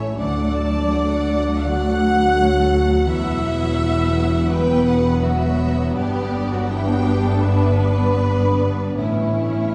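Cinematic, emotional film score for orchestra, tender and hopeful, with a rubato feel, drawn from a longer piece and moving through Dmaj7, Esus2, G and A in under 10 seconds. A focused, close violin section with vibrato carries the melody while a smooth, distant second violin section and a pure, mellow flute ensemble in the background add second lines. A dark, lush viola section, vintage-toned French horns holding sustained chords, very quiet ringing harp arpeggios, an intense cello section and a background double bass section on the bass fill out the orchestra, all heard from further back in a wet scoring-stage reverb.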